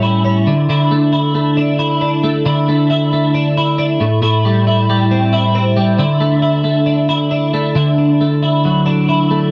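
A twelve-string electric guitar carries this short indie pop fragment on its own, its clean, twangy picked tone sitting up front and thickened by an ensemble chorus. The mood is youthful and bright, moving at 136 BPM in a straight 4/4 in D major, with the tuning set slightly low at A4 = 438 Hz. The guitar ranges from A2 to E4, outlining Dsus2, a turn to Am7 at 4.0 seconds, a return to Dsus2, and then Dadd9 as a new section begins at 7.8 seconds. Its sound is compressed and closely captured in a dry 1970s-style studio setting with little reverb. The passage runs 9.5 seconds, cut from a longer piece.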